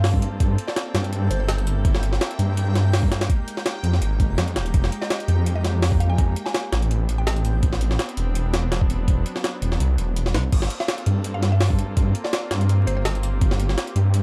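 Over a bed of vinyl crackle, a gritty, overdriven jungle drum kit with a thumpy kick and high-tuned snare drives a raw, frenetic drum and bass excerpt alongside a thick, menacing detuned saw bass, while a dark, bowed string section floats sustained chords beneath a reversed, dreamy swelling texture and a woody, mellow mallet-like pluck that surfaces in brief phrases through chorus, phaser and dub echo, the kick dropping out from 9.8 to 10.5 seconds before the groove returns.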